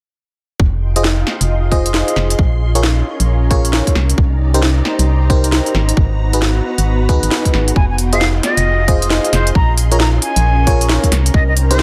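Moody and bouncy, this two-step UK garage cut from a longer piece swings its sixteenths at 134 BPM in F minor, cycling through Fm7, Bbm7, Cm7 and Abm7. A tight, tape-warm electronic kick and a hollow, organ-like FM bass open at 0.6 s, both up front, the bass dark and percussive with a fast, decaying attack. A layered garage kit adds a cracking snare and crisp hats, re-recorded in a large room, while a glassy FM electric piano plays bell-like stabs through chorus and tape echo. Behind them, a silky vintage string machine holds mellow sustained chords in the background, and an ethereal, detuned pad adds airy texture with built-in reverb, both pumping under sidechain with ensemble chorus. At 7.8 s a reedy silver concert flute takes the melody with a straight, tongued tone and rolled-off highs, its line trailed by tape echo, all set in a digital ambience.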